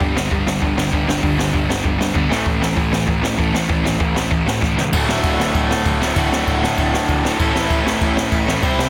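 A brushed drum kit and a stack of picked guitars open this upbeat, energetic punk rock excerpt together. A dark, double-tracked fuzz guitar and a bright overdriven electric guitar drive the main riff, while a second, warm and compressed overdriven guitar adds a very quiet riff of its own until 4.9 seconds. Underneath, a growly picked bass with overdrive and fuzz sits in the background, its sound both direct and amped. The drums are acoustic and up front in a small, natural-sounding room, with dark cymbals, a high-tuned snare and a boomy kick, and a short fill at 4.6 seconds marks the turn into the second section. The chords move from G to A, then from D to A, all in a dry, dense and heavily limited modern mix.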